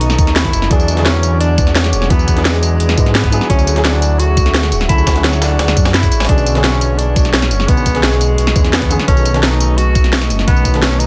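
A dense, heavily limited modern mix with light reverb frames this dreamy, lush passage of liquid drum and bass, cut from a longer piece. A tenor saxophone carries the melody in a jazz style, its subtone, vibrato and scooped notes roughened by vintage 12-bit sampler grit and trailed by delay. Beneath it, a dark baby grand piano accompanies with an intimate, short-sustained tone and audible action noise, passed through tape echo, while a glassy, ethereal FM pad sits in the background with ensemble chorus, built-in reverb and sidechain pumping. Up front, a deep, rumbling detuned saw bass holds the low end, its beating tone sustained. The drums layer a produced kit with a cracking snare, bright hats and tambourine over a very quiet, gritty breakbeat sampler kit, while an overdriven, knocking electronic kick enters at 0.2 seconds and drops out at 10.7 seconds. The harmony moves through lush extended chords, from B9 and E9 to Dmaj9#11 and Bm69 before returning to B9.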